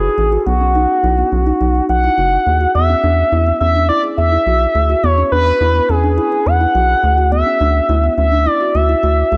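A straight 4/4 pulse at 105 BPM carries this melancholic, nocturnal synth-pop excerpt, cut from a longer piece. An expressive synth lead sings the melody from start to finish, its smooth, nasal tone sitting up front with a touch of chorus and vibrato. Beneath it, a kalimba plays soft, woody arpeggios through an analog delay, its short plucks sounding like a hollow box. A rubbery square bass bounces along up front, dark and buoyant with a quick filter pluck. The harmony moves from B to E at 2.8 seconds, where a new section begins, then settles on Dadd9 at 7.0 seconds, all set in light reverb with a small room ambience.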